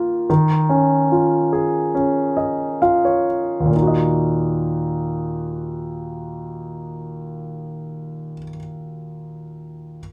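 Emotional and longing, this short pop excerpt is carried by a single concert grand piano playing accompaniment in a slow, straight 4/4. The piano sounds intimate and up front, with deep bass, a polished finish and audible action noise that brings the listener close to the instrument. A moderate studio reverb gives it the feel of a live performance in one room. The opening eases and slows through its first 3.7 seconds, the piano adding a fill from 1.9 seconds as the harmony rests on a Dbadd9 over Eb. At 3.7 seconds the music settles onto Eb minor for the second section, and the piano plays on until the fragment ends at 10.0 seconds.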